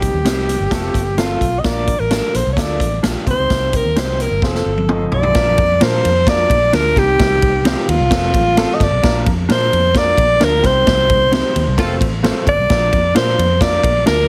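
A breathy alto saxophone with vibrato and scooped notes leads this joyful, uptempo 1960s-style soul excerpt, sitting up front over a swinging big-band drum kit with a boomy kick and a fill from 4.4 to 5.4 seconds. A round, foam-muted electric bass and a dark grand piano with audible action noise and long sustain fill out the sound, while a mellow electric guitar with analog chorus adds stabs in the background. A tight horn section appears briefly at 11.8 seconds during a band accent, all under light reverb and a heavily compressed, radio-like sound.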